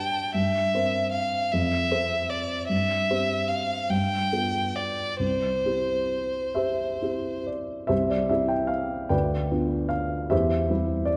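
A single violin with a rich, focused tone and vibrato sings a tender, lyrical melody over a dark, mellow baby grand piano, whose action noise is audible, in this romantic classical duo in C major and 6/8 at a rubato 44-53 BPM, both up front in a reverberant concert hall, the chords moving from C7/G through F and G9 to C before the violin stops at 7.4 seconds and the piano carries on alone to close on C/E, cut from a longer piece.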